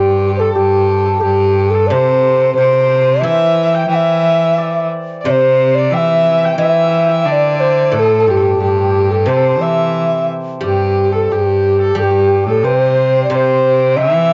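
Chinese traditional chamber music in a pastoral, festive mood, this short passage cut from a longer piece moves at 90 BPM in a straight 4/4 within a C gong mode, tuned to A4 = 439 Hz. The low xiao carries the melody, close-miked and up front, its bamboo tone airy and mellow with vibrato and a crisp attack, colored by a cassette tape effect. A single bowed cello plays a second line in its lower register, sounding clear, biting and earthy with light vibrato, also placed up front. The hammered dulcimer adds a shimmering, ringing second line, while one erhu, rich and smooth with vibrato and portamento, sits more distant in the same range as the xiao. Further back, the guzheng, played with fingerpicks, provides a bright, silvery accompaniment, and all five parts play together for the full 14.3 seconds. Light reverb surrounds this home recording on cassette, whose sound stops short of anything above 7.7 kHz.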